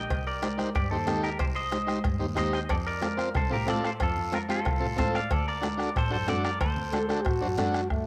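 Danceable and driving, this brief cumbia excerpt at 184 BPM sets a twangy, up-front clean electric guitar melody with cassette-tape color over a bowed double bass, buzzy overdriven combo organ, soft-beater bombo, raspy guiro, thick-skinned congas in the background and very quiet ringing cowbell and timbales, moving through Cm, F and D7 in a spring-reverbed home cassette recording before a punchy clear trombone enters at 6.9 seconds.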